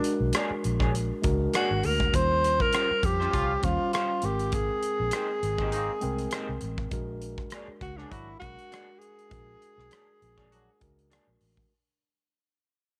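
Lightly reverberant and fading out across its whole length, this short cut from a longer piece is 1970s-style soul with a gently swung feel, led up front by an intimate, breathy tenor saxophone with scooped notes and vibrato. A mellow tine electric piano heard through its built-in speakers, a round, foam-muted fingered electric bass, and an airy studio drum kit with a punchy kick, hi-hat and rim click fill out the accompaniment, while an electric guitar through a small, slightly broken-up old amp plays a riff bathed in lush chorus. From 3.3 seconds a clear, vintage horn section adds stabs in octave doubling over chords such as Bb7alt, Eb13 and Abmaj9.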